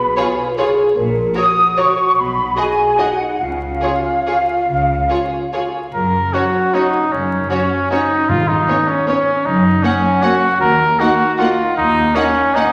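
A wet recital-hall reverb and vinyl crackle frame this festive, sweeping classical excerpt in F# major, a rubato 3/4 at 133-166 BPM where lush bowed violins sing the melody over background chamber violins and violas, a rich cello section and a woody double bass section, while an airy, up-front flute ensemble and a dark, tight French horn section fill the opening before a warm solo trumpet takes over with stabs from 5.9 seconds and soft-mallet timpani sound a round G#2 at 8.3 seconds.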